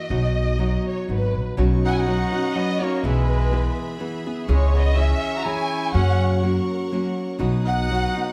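In a moderate recital hall reverb, this passionate, dramatic mariachi-style Mexican folk piece moves at 123 BPM in 3/4 in B major. An up-front, full-bodied nylon-string guitar fingerpicks the accompaniment, with audible finger squeak, over a woody pizzicato upright bass, while a dark, distant symphonic violin section carries the lush, expressive melody with vibrato. From 1.6 s a bright, biting studio violin section holds sustained chords in the background, and at 1.8 s a mellow, vintage trumpet adds a classical-style second line as the chords pass from B through Badd9, E/B, C#m and F# back to B.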